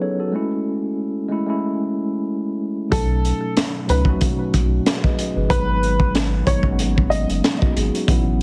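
Heavily compressed with a radio-like sheen and light studio reverb, this dark, tough boom-bap hip-hop excerpt at 93 BPM opens with a mellow tine electric piano on a rootless F#m9/G# chord before, at 2.9 seconds, a crunchy, saturated breakbeat kit with a punchy kick and high-tuned snare, a deep, round sine sub bass and a woody, slightly detuned upright piano melody with delay arrive over B7 and then G#m7.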